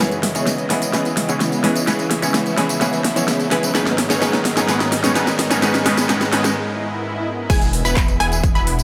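A straight 4/4 pulse at 128 BPM drives this powerful, anthemic festival progressive house excerpt in G# minor, built on an overdriven big-room dance kit with a huge snare, metallic hats, handclaps, rim clicks, tambourine and crash cymbal that runs a fill through most of the build-up. Over C#m7 and G#madd9 chords, a brilliant concert grand piano plays accompaniment beside a lush, nasal unison pad, both pumping against the sidechain. A punchy detuned supersaw stab carries the riff through phaser, tape coloring, delay and a filter sweep during the build, while a very quiet riser and swell sits beneath. The piano stops at 6.5 seconds, and a short break holds the tension until the drop lands on E at 7.5 seconds. There, an overdriven electronic kick comes up front, a thick, saturated detuned saw bass holds a low E1, and a decaying unison pluck arpeggio rings high with delay, all set in a huge ambient reverb with a faint mains hum.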